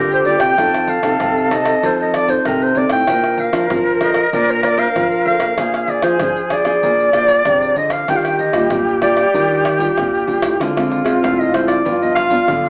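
Samba and choro in a yearning yet lively mood, cut from a longer piece, with an up-front, jazz-styled clarinet carrying the melody in a mellow, vintage subtone with soft attacks and vibrato, while a distant, airy silver flute adds a tongued second line beneath it. One nylon-string guitar plays a thumb-plucked classical accompaniment complete with finger squeak, another fingerpicks a full-bodied bass, and from 0.1 s a close tube shaker, pandeiro, tamborim and deep surdo drive the rhythm. The harmony moves from Gm9 through Bbmaj9 and Ebmaj9 to a closing Dm7b5 and G7, all heard from further back in a wet studio room with an AM radio sound.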